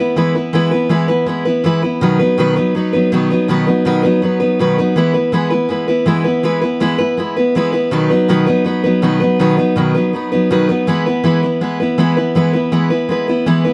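Country excerpt with a sunny, easygoing mood, carried by a single picked steel-string acoustic guitar playing solo for its full 13.7 seconds. The dreadnought's bright, fresh-stringed tone sits up front in a light reverb, moving between E and B chords in a straight 4/4 feel.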